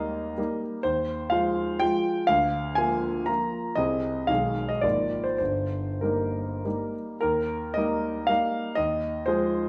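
A clear concert grand piano plays alone and up front, its deep bass anchoring a graceful, proud romantic dance in triple time with dotted rhythms and supple rubato. The harmony passes briefly through a darker minor chord at 4.3 seconds before the opening phrase returns at 7.2 seconds. A wet recital hall reverb surrounds the piano's natural tone in this short cut from a longer piece, which ends at 9.7 seconds.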